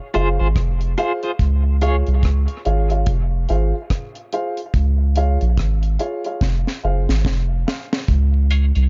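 Dub reggae at 72 BPM in Db major with a swung 16th feel, this spacious, hazy fragment alternates Fm and Db chords over a round, deep sub bass and a dry, up-front drum kit with a tight kick and high-tuned snare, while a dark, woody upright piano with audible action noise plays echoing stabs throughout, a clean, compressed electric guitar with tremolo and dub echo comps until 2.0 seconds before briefly returning at 8.5 seconds, and a filter sweep from 4.7 seconds and a drum fill from 6.4 seconds color the dark, warm, low-ceilinged mix.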